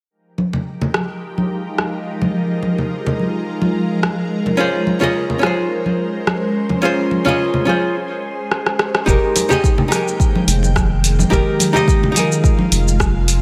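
Relaxed and smooth, this sunset chillout excerpt in F minor moves at 107 BPM with a lightly swung feel, as an ethereal, airy pad holds sustained chords through chorus, reverb and phaser, over bright, thin-skinned congas and a tape-warm deep house kit of hi-hat, rim click and shaker. A dark, clean hollow-body archtop guitar enters with delay at 4.6 seconds as the harmony moves to Bbm9. After a short break from 8.0 seconds, topped by a drum fill from 8.5 seconds, a round analog bass holding a deep F and a layered electronic kick arrive at 9.1 seconds, both sitting up front in a gentle digital ambience.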